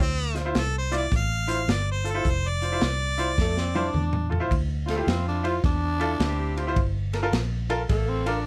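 A bright, overdriven harmonica and a round, foam-muted electric bass open this brooding, soulful electric blues shuffle in D minor at 106 BPM. They are soon joined by a woody upright piano with audible action noise and a gritty, saturated breakbeat kit, whose fill at 3.4 seconds leads into a raspy, growling tenor saxophone solo from 4.5 seconds. A tight, clear saxophone section adds soft-attack stabs as the harmony moves from Dm9 to Gm9, all in a dry, close-sounding cut from a longer piece.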